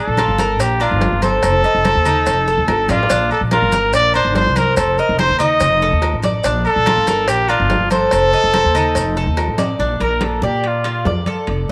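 This sunny excerpt of Cuban son and guajira opens with a vibrato-rich, punchy trumpet carrying the melody up front over picked Cuban tres arpeggios with metallic double strings and a tape echo, while a woody, thumpy pizzicato upright bass settles beneath on gut strings. Congas with a thick skin, a tight high-tuned cowbell, grainy distant maracas and ringing metal-shell timbales and agogo bells sit in the background, with drum fills at 2.9 and 9.6 seconds as the harmony moves between Bb and F7. At 9.8 seconds the cowbell and maracas stop and the trumpet takes a solo, heard with light reverb in a small room.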